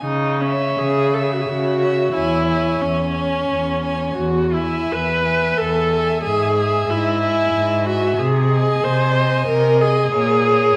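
An up-front, dark-toned viola, played con sordino with vibrato, carries the accompaniment in this tender, lyrical slow romantic movement for string quartet: a rubato 3/4 in C# minor at roughly 77-94 BPM. A veiled cello with portamento holds the bass up front, a warm first violin with a soft attack and light vibrato sings the melody, and a close second violin joins in the background at 0.4 s with a second line. The quartet sounds through a reverberant recital hall as the harmony moves from C#m toward E and reaches Bbm7 at 10.1 s, in this short cut from a longer work.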